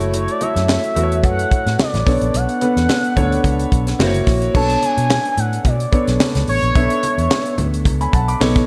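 Polished 1980s jazz-funk pop with a bittersweet, slick mood, this short excerpt moves at 109 BPM in 4/4 with a light sixteenth-note swing, set in B dorian. A tight funk drum kit sits up front with a high-tuned snare, a tight kick, hi-hat and crash cymbal, while a round, foam-muted vintage electric bass plays underneath and very quiet, low-tuned congas add a thick-skinned, band-limited pulse. A clear concert grand piano with deep bass and a lush chorus carries the accompaniment through chords moving from F#m7 to Bm9 and F#7 before returning to Bm9 at 4.5 seconds, where a second section begins. Entering at 0.2 seconds and ending at 7.5 seconds, a smooth, nasal synth lead with chorus and vibrato carries the melody, blending sawtooth and triangle tones with a fast attack and sustained notes. The bright digital production sets the parts in a moderate, lush hall reverb.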